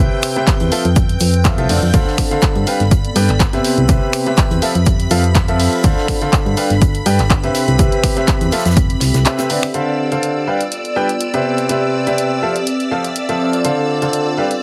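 Heavily compressed with a radio-like sheen and light small-room ambience, this euphoric, uplifting piano house excerpt moves at 123 BPM in G mixolydian with a gentle 16th-note swing, its chords cycling through Cmaj7, Fmaj7, Dm7 and G7. An up-front, brilliant grand piano riff with long sustain and delay leads over shimmering vintage string-machine violins, a warbling, nostalgic lo-fi pad sitting in the background with chorus and phaser, and a round, mellow FM bass, all breathing with sidechain pumping. A punchy tape-toned kick, an analog drum machine of finger snaps, handclaps and hi-hat, and a very quiet, dry 70s kit with a fat snare drive the groove until the kick, bass and kit drop away one after another between about 8.9 and 9.7 seconds, leaving piano, strings, pad and drum machine to carry on.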